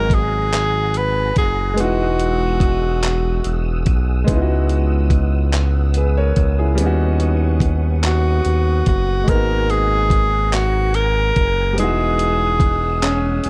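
A breathy, subtoned tenor saxophone carries a yearning, sultry melody with scooped notes and tape echo over intimate grand piano, a lightly overdriven tonewheel organ with chorus vibrato and slow rotary swirl in the background, a smooth up-front synth bass and a gritty, compressed sampler-style soul kit of thumpy kick, hi-hat and handclaps in this dry, close, 1970s-style slow six-eight R&B fragment, the saxophone resting from 3.9 to 8.1 seconds before returning, and the piano slipping in a fill at 13.0 seconds.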